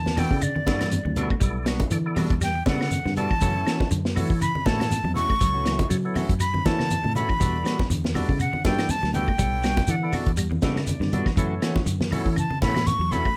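A breathy, bright jazz flute leads this afrobeat excerpt, soloing up front from the first second to the last with vibrato and a crisp, chiffy attack. The mood is funky and defiant, at 120 BPM in 4/4 with a light swing on the sixteenths, moving in E dorian between Em9 and F#m7. Beneath it, a vintage drum kit with a tight kick, medium-tuned snare and hi-hat sits forward with a rolled-off top, while a round, foam-muted fingered bass anchors the low end with a dark tone. Two clean, picked electric guitars fill the middle: a dusky one plays arpeggios in the background, and a brighter one adds stabs through a slapback echo. A percussive tonewheel organ with key click and a slow rotary speaker supplies full accompaniment and steps out for a short fill from 10.4 to 11.4 seconds. Low-tuned congas and woody claves sit in the background, and a grainy, saturated shekere adds texture, all under a light reverb.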